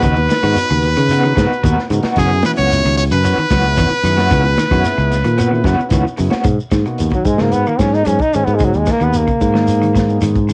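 A straight 4/4 breakbeat groove at 112 BPM drives this hypnotic, intense afrobeat excerpt in G# minor, where crunchy, saturated drums with a tight kick, a punchy, up-front fingered bass and a grainy shekere in the background carry chords moving from G#m7 to F#7sus4 beneath clean picked guitar arpeggios with lush chorus, slightly broken-up tremolo guitar stabs that stop at 6.5 s and a very quiet vintage combo organ, while a brilliant, forceful trumpet with vibrato leads the melody until 5.9 s before a roomy trombone solo enters at 7.1 s, captured as a home cassette recording with moderate studio ambience.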